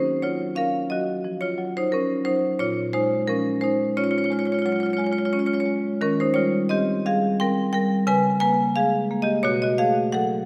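A solo marimba played with medium hard mallets opens the recording, its rosewood bars giving a woody, bright and percussive tone that sits up front. This short passage from a longer contemporary classical piece moves in a flowing, hypnotic 5/4 with a loose, rubato feel. The harmony drifts through rich extended chords, from Ebm9 at the start through Bbm7 and Eb13, briefly thinning to a bare Db5 before landing on B13 at 9.4 seconds, near the close at 10.5 seconds. The part spans a generous range, from low Bb2 up to Ab5. A wet reverb with a 1.7-second tail, in the manner of a church or concert hall, surrounds each struck note and lets the sound bloom into the space.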